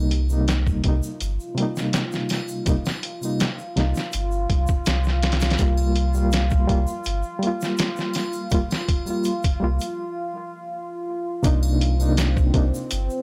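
A round, sine-toned sub bass sits up front with transformer saturation in this dark, melancholic trip hop excerpt at 82 BPM in C minor, joined by a reedy, clean electric piano with fast tremolo and tape echo, and a compressed, muffled, pitched-down sampler-style drum kit with a thumpy kick in small room ambience. A detuned sawtooth pad with slow attack, chorus and reverb holds moody sustained chords behind, while a distant egg shaker and triangle add faint texture. The harmony moves from Cm7 to Gm7 at 5.6 seconds, a break arrives at 10.0 seconds, and a Cm9 closes the passage from 11.4 seconds, heard as a dry, gritty hardware recording.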